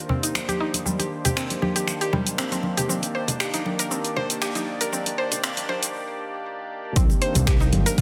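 Afro house at 118 BPM in C minor with a hypnotic, warm feel: a smooth, warbling analog pad holds a Cm9 chord while a woody, round mallet-like synth pluck spins arpeggios through chorus, cassette tape and delay, a filter sweeping across it as the passage builds. Soft-handed, thick-skinned congas join a deep house kit of finger snaps, dark hi-hats and shaker, the kit sitting up front, all in a lush hall reverb, with the pad and pluck pumping against the beat. After a break at 5.9 seconds, the drop at 7.0 seconds brings in an overdriven electronic kick and a rumbling, detuned saw bass, and this short cut from a longer piece ends there.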